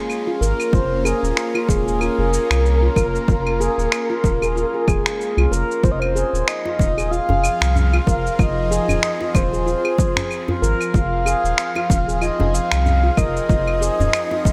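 Bright, 1980s-style digital production with plate reverb frames this hypnotic, earthy organic downtempo groove, where a breathy, flute-like synth lead with chorus and delay sings over a tense, detuned bowed-like drone with phaser and sidechain pumping, ringing stainless-steel handpan arpeggios, a round, up-front analog bass, a punchy overdriven electronic kick, and gritty electronic claves, cabasa and finger snaps with gated reverb, all swinging on the 16ths until a deep, dry djembe joins in the background at 6.7 s, shortly after the chords move from Bbm to Fm7.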